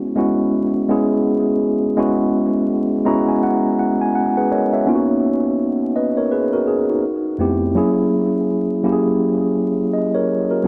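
A mellow tine electric piano plays solo and up front in this soulful, warm R&B excerpt at 83 BPM with a 16th-note swing, its clean tone trailed by analog delay and a plate reverb under a bed of vinyl crackle, as it adds a fill from 2.7 to 4.9 seconds before moving from F#9sus4 into a new section of Bmaj9, Fmaj9#11 and F#7.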